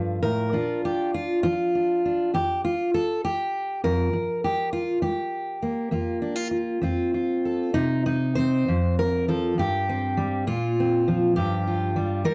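A lone fingerpicked steel-string acoustic guitar opens this pastoral folk excerpt in a gently rubato 6/8, its full-bodied jumbo tone and fresh strings sitting up front with a touch of slapback echo in a dry, close 1970s-style booth, moving from Bb and Gm through suspended chords into a second section at 7.8 seconds that settles on open, unresolved harmonies.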